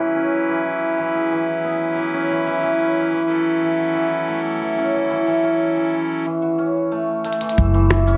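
Delicate and wistful, this folktronica excerpt opens on shimmering, hammered cimbalom arpeggios carrying a filter sweep and delay, over reedy, clear accordion chords that stop at 6.3 seconds. A drum fill of clicky, overdriven electronic hi-hat, shaker and percussion blips arrives at 7.2 seconds. At 7.6 seconds a punchy, airy kick lands with woody pizzicato upright bass and a dreamy, reversed, granular texture in the background, all set in a light reverb.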